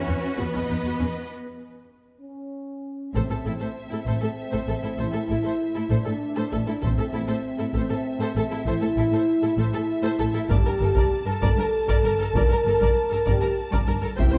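In a straight 6/8, this dark, heroic piece of epic orchestral film score opens on bowed strings with vibrato: a lush violin section carries the melody over a clear, distant second violin line, focused violas, soft-attack cellos and rich double basses. After a short break at 1.3 seconds, a mellow, up-front French horn section sustains chords from 2.2 seconds, and a taiko ensemble struck with hard sticks, sounding from a large room, joins at 3.1 seconds. Moderate concert hall reverb and a dark, warm production give the whole cue a cinematic weight.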